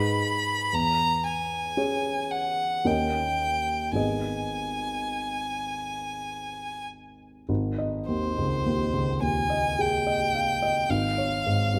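A clear, smooth violin sings a melody with vibrato over a dark, mellow grand piano with a vintage character and short sustain, both up front from the opening in this melancholic, solemn romantic classical duo, cut from a longer piece. The music moves slowly in 3/4 at around 50-59 BPM with a rubato feel, beginning in G# minor before turning to Ab major at 7.5 s. A moderate recital hall reverb surrounds both players.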